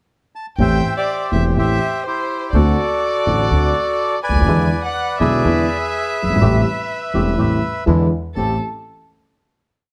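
Melancholic and tense, this short, complete tango in A dorian moves at 124 BPM with a rubato feel, as a reedy, smooth bandoneon carries a motif-based melody with plate reverb from 0.4 seconds, a dark violin adds a bowed second line with vibrato and portamento, a mellow, boxy concert grand piano and a woody pizzicato upright bass set a milonga rhythm beneath, and a vintage, band-limited second bandoneon joins with background milonga stabs at 4.5 seconds before the piece settles on a final chord at 8.4 seconds, all captured by close, detailed microphones in light reverb.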